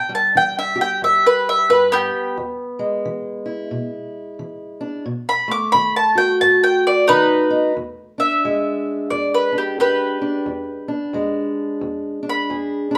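A woody, double-string mandolin takes the melody up front from the start, with a dark, boxy fingerpicked parlour guitar beneath it, in a soulful, rollicking swung acoustic country blues at 89 BPM that moves from a mandolin solo through A5, E and B7 before shifting to E7 at 7.8 seconds, all played live in one room with a moderate large-studio reverb, cut from a longer piece.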